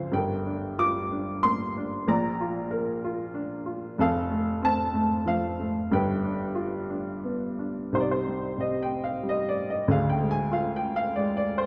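A dark, woody upright piano, slightly detuned and boxy with short sustain, plays alone and up front in this bittersweet, moody fragment of a lyrical classical solo piece in a rubato three-beat lilt, spanning D1 to D6 and set in a wet recital-hall reverb, before the harmony turns toward a new section at 7.9 s.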